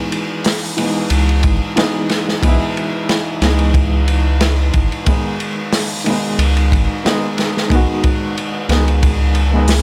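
A studio ambience frames this dark, smoky trip hop excerpt in C# minor at 91 BPM with a light 16th-note swing, where a woody, mellow upright piano with tremolo and tape echo plays accompaniment from the start, a crunchy, saturated breakbeat kit with a tight kick and dark cymbals enters at 0.1 seconds, and a round, deep analog bass with a nasal filter pluck joins at 1.1 seconds over a move from C#m7 to G#m.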